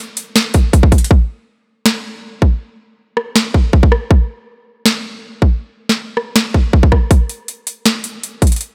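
Hip hop in a half-time feel, eerie and menacing, built on an electronic trap drum kit that sits up front from 0.2 seconds, its hard-clipped kick, sharp snare, metallic hats, rim clicks and finger snaps pushed through overdrive, all inside a digital ambience, with a break from 1.1 to 7.1 seconds in this short cut from a longer piece.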